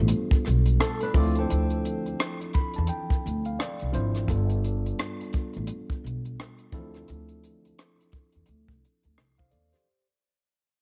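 An 86 BPM groove in 4/4 with a swung sixteenth-note feel anchors this sultry, smooth neo-soul R&B excerpt in D dorian, where a compact cocktail drum kit of hi-hat, punchy kick and rim click sits dry and up front beside a woody, growly pizzicato upright bass, both running nearly the full 10 seconds. A worn, slightly out-of-tune tine electric piano played through a combo amp comps over G9 and Dm7 chords and adds a fill from 2.2 to 4.3 seconds, while a fingerpicked flamenco guitar, finger squeak audible, briefly carries a second line between 0.8 and 2.4 seconds. The cut comes from a longer piece and fades out throughout, with studio reverb and the soft grain of a home cassette recording coloring the piano, drums and guitar.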